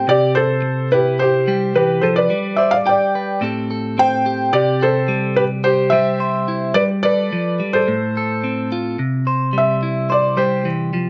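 A felt-muted upright piano carries the melody up front, its soft, mellow and intimate tone set in plate reverb. This brief highlife excerpt, cut from a longer piece, moves at 108 BPM in 4/4 with a light swing on the sixteenths, and the mood is sunny and joyful in C major. Beside it, a clean electric guitar plays picked accompaniment with a compressed, scooped sound, also up front, through the whole 11.1 seconds. The harmony moves through C, G, Am7, C, Gadd9 and F/A before landing back on C at 9.0 seconds, where the piano takes a short solo. A small, reverberant room surrounds the pair, and the top end stops at 7.9 kHz, giving the recording a rounded, cozy sheen.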